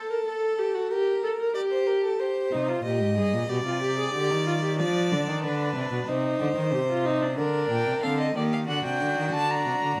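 Set in a straight, steady 4/4, this short passage from a longer baroque-style fugue for string quartet has a driving yet solemn character. A rich, close-sounding violin carries the second line from the opening, alongside a viola accompaniment that sounds more distant, though both are bowed and held up front with vibrato. A cello enters on the bass at 2.5 seconds, played sul tasto with an airy bow, soft attack and light vibrato, giving the low end an intimate quality. At 7.7 seconds, a warm lead violin takes up the melody in the highest register, focused and smooth on top. The whole quartet sits in a wet stone room whose reverb lends the counterpoint a resonant weight.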